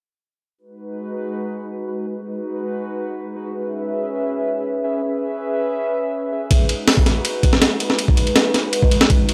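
A warbly, tape-like pad leads this nostalgic, atmospheric drum and bass and jungle fragment, its detuned sawtooth and triangle tones blooming through a slow attack into mellow sustained chords with a long release. Chorus, built-in reverb and the grit of a vintage 12-bit sampler give the pad a lo-fi, worn character as it moves from G#m7 to C#m7 and back to G#m7. The music floats in free time, and a breakbeat sampler-style drum kit arrives at 6.5 seconds, bringing hi-hat, ride cymbal, a thumpy kick and a high-tuned snare. The compressed, gritty drums sit up front alongside the pad and hit harder than its hazy chords. Light reverb and a digital ambience surround a dry, hardware-rough sound, and the cut ends at 9.3 seconds as though lifted from a longer piece.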